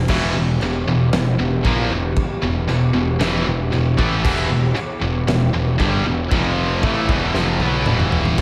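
An up-front, double-tracked high-gain guitar drives this heavy, epic metal excerpt with a riff in E phrygian at 116 BPM, felt in half time, shadowed by a very quiet second picked guitar of its own. Punchy fuzz-overdriven bass and a big acoustic rock kit, with a fat snare, punchy kick, china and crash cymbals, lay down the low end, and the drums close on a fill at 7.3 seconds. Behind them, a hollow, airy, flute-like pad with chorus holds soft sustained chords over Em and a brief F5, all set in a lush hall reverb for a big arena sound.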